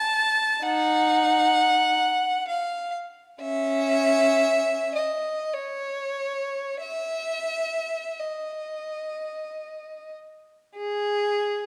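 Classical solo violin in a lonely, yearning mood, this short fragment from a longer piece unfolds in a free, rubato 3/4, with one player's bowed, rich, focused tone sung out up front with vibrato across the full 11.7 seconds, ringing into a moderate recital hall.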